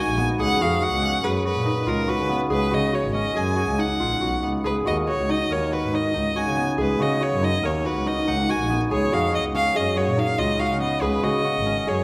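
Set in a straight 5/4 at 141 BPM, this short section of a longer piece is contemporary chamber music in Db mixolydian, tuned to A4 = 441 Hz, with a hopeful, shimmering mood. A single bowed violin carries the melody between Bb4 and Ab5, its tone clear, smooth and even, with vibrato, and it sits up front. Beneath it, a concert harp plays fingerpicked arpeggios between Cb4 and Bb4 with an acoustic, ringing sound. A muted double bass, bowed con sordino by one player, anchors the low end from Ab1 to Db3 with a dark, veiled tone and its own vibrato. All three parts play throughout the 12 seconds over a Db7sus4 chord, then Cbmaj7/Db at 4.6 seconds, then Db7sus4 again, all inside the wet bloom of a recital hall.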